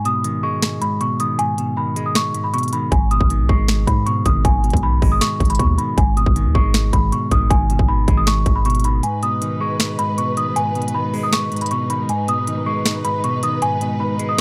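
Eerie and menacing, this half-time trap excerpt sets a bell-like, slightly out-of-tune celesta melody over clean, hollow-body electric guitar accompaniment, with a trap kit of hard-clipped kick, sharp snare, crisp hi-hats and finger snaps pushed up front. A deep, sine-toned 808 bass enters at 2.9 seconds and drops out at 9.0 seconds, when a dark, woody string section enters with lush bowed chords. The sound is dry and gritty, with little reverb, and it is cut from a longer piece.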